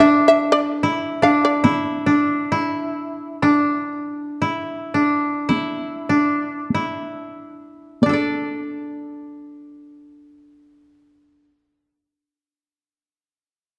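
A buzzing, plectrum-plucked shamisen carries the melody up front in this meditative Japanese chamber music, its fretless voice powerful and percussive. Beneath it, the koto plays a second line with fingerpicks, its tone bright and woody and sitting just as forward in the mix. A taiko ensemble played with heavy sticks stays in the background, entering at 1.6 s and falling away at 8.6 s. The rubato pulse slows through the opening passage before a new section begins at 8.0 s, and the mood remains still throughout. A moderate scoring-stage reverb surrounds the instruments within a dark production.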